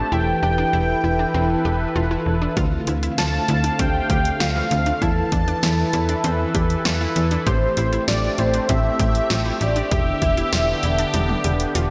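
A straight 4/4 synth-pop groove takes shape once a punchy analog drum machine arrives at 2.6 seconds, its tape-warm kick and snare sitting up front alongside hi-hat and toms, and a drum fill closes this melancholic yet driving excerpt from 11.1 seconds. From the start, a snappy FM bass with a metallic, fast attack that then decays holds the low end, while a sweeping resonant pad lays down airy, evolving sustained chords with a soft attack, a filter swell and a chorus shimmer. Tucked in the background, a round, warbling analog pluck spins arpeggios through chorus and tape echo, its detuned sawtooth and square tones giving it a vintage character. Over this, a thick, bold unison lead carries the melody with vibrato, a sub octave and a moving notch, its mellow sustain trailed by tape echo. The harmony moves from Esus4 through Dm7, back to Esus4, then on to Am7 and Em7, and the whole mix is soaked in a lush hall reverb that makes it feel dreamy.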